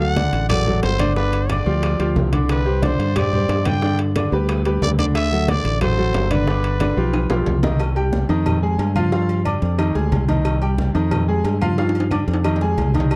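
Salsa at 181 BPM, passionate and fiery, where a raspy, growling trumpet carries the melody until 7.5 s over an up-front vintage grand piano, a round, dark fingered electric bass, distant low-tuned congas, tight high-tuned bongos and cowbell, ringing metal-shelled timbales with agogo bells, and faint woody claves, all in a dry, close 1970s-style studio sound, with drum fills closing each of its two chord passages before the excerpt is cut from a longer piece.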